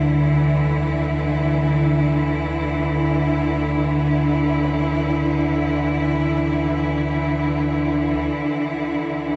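A bright, biting cello section holds sustained chords up front with vibrato, its intense bowed tone sitting above a deep, rumbling drone whose detuned, nasal timbre carries a built-in reverb, while soft bronze carillon bells ring arpeggios at the edge of hearing. This desolate, ominous piece of dark ambient drone unfolds in free time, cut from a longer work and steeped in cathedral reverb with a cassette tape character. Near 8.2 seconds a filter sweep passes over the synth drone as the music moves into a new section.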